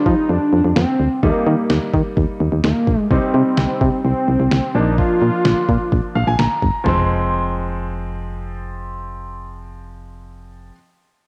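Synth-pop with a nocturnal, melancholic mood, this short cut from a longer piece sets a fat, detuned sawtooth lead with vibrato and tape echo on the melody until 6.3 s, over a polished baby grand piano, a punchy, round FM bass and a thumpy, overdriven 8-bit drum machine with cassette-tape grit, before a piano fill at 5.9 s leads into a closing passage of piano and bass once the drums stop at 7.0 s, the whole set in moderate spring reverb with a homespun cassette character.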